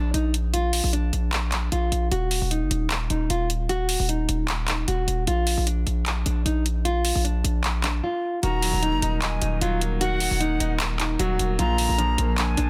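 Hard-hitting and melancholic, this half-time trap and hip hop piece moves at 152 BPM in 4/4, set in Eb harmonic minor with chords shifting between Bb and Ebm. A full-bodied, fingerpicked nylon-string guitar carries the melody from the start, its deep classical tone softened by a low-pass filter and trailed by tape echo. Beneath it, a punchy, saturated 808-style bass sits up front with a sine core, a noise layer and a fast, decaying attack, while an electronic trap kit adds handclaps and metallic hi-hats. After a short break at 8.0 seconds, a new section opens at 8.4 seconds, where an airy jazz flute with vibrato and a soft attack joins as a second line, also treated with tape echo. A clear concert grand piano enters alongside it as accompaniment, its deep bass and long sustain shaded by a low-pass filter. The whole sits in studio reverb with a dense, heavily limited modern master.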